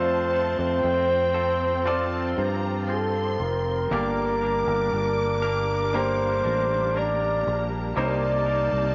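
A hopeful, tender pop ballad at a slow 59 BPM in 4/4, this short excerpt is cut from a longer piece and moves from F to G minor at 3.9 seconds and to C minor seventh at 8.0 seconds. A breathy, whispered flugelhorn carries the melody up front with a soft attack and vibrato, sounding intimate and mellow, while a bright, focused violin section traces a high second line touched by tape echo. Beneath them, a clear concert grand piano provides accompaniment with deep bass, and a lush string section holds sustained chords with expressive portamento, both sitting in the background. A clean, twangy electric guitar, recorded direct and compressed, picks arpeggios with tape echo, and a fingered electric bass sits up front with a growly, round, punchy tone. The whole arrangement has the feel of a home cassette recording, dulled of high treble, with light reverb and a small room ambience.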